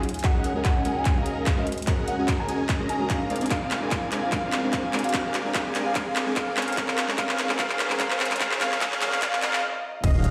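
Driven by a half-time 4/4 feel at 147 BPM with a light swing on the sixteenths, this bittersweet, emotional future bass excerpt is a ten-second build-up that stops at 9.6 seconds before an impact lands at 10.0 seconds. A punchy, up-front electronic kick and a layered big-room dance kit with metallic hi-hats, handclaps and crash cymbal carry a drum fill through the build, while a very quiet riser and impact sit beneath. A huge, compressed supersaw riff with a moving notch and sidechain pumping sweeps through a low-pass filter, joined by a velvety lead melody, itself filter-swept, with vibrato, portamento, chorus, delay and a cassette tape colour. A soft, dark pluck with lush chorus plays accompaniment in the background, and a shimmering, ethereal pad with granular texture and phaser holds the Ab9sus4, Bb9 and Db69 chords very quietly. At 10.0 seconds a thick detuned saw bass and an airy, dreamy arpeggiated lead arrive just as the excerpt ends, all set in a wet digital room reverb with a stone-room character, as if played on a big sound system in a bare space.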